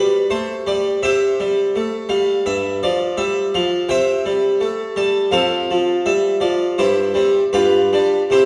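A full, brilliant Italian-style harpsichord with three sets of plucked strings sits up front and plays alone throughout this dance-like, radiant fragment of a baroque-style classical suite movement in C major, moving with rubato at around 84 BPM in 4/4, tuned to A4 = 443 Hz, spanning F2 to A5 through a progression from G and C to Dmadd9, F, C/G and G7 before cutting off at 8.5 seconds, all set in a wet recital-hall reverb heard from further back in the room.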